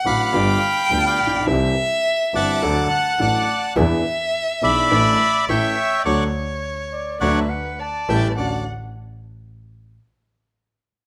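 A rubato tango in 4/4, playful and nostalgic, carried by a dark, reedy bandoneon melody up front. A close, expressive violin sings a second line with vibrato and portamento, while a woody upright piano, its action noise audible, accompanies and a bowed double bass supplies a biting, nasal, earthy bass. The band accents together from 6.1 seconds, and a distant, mellow clarinet joins at 6.9 seconds, all set in a moderate large-studio reverb in this passage cut from a longer piece.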